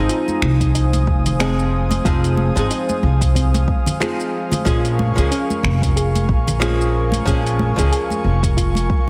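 A woody, thumpy upright bass sits up front in this wistful sunset chillout excerpt, plucked pizzicato on steel strings at 92 BPM in 4/4 with a light sixteenth-note swing. Around it, a dark, clean hollow-body archtop guitar, miked and amplified, plays accompaniment through a digital delay, while an airy, breathy pad holds slow-attack chords with chorus and a long release. A soft, round pluck traces arpeggios in the background, and bright congas played with hard hands sit close and dry further back. The overdriven deep house kit supplies finger snaps, hi-hat and shaker, joined at 0.6 seconds by a deep, layered electronic kick re-recorded in a small room. A bright, twangy clean electric guitar with lush chorus and delay carries a brief melody on Eb4 in the opening moments, over harmony that moves from Fm7 to Bbm7 at 4.7 seconds. A moderate hall reverb and heavily compressed, radio-like sound tie the mix together.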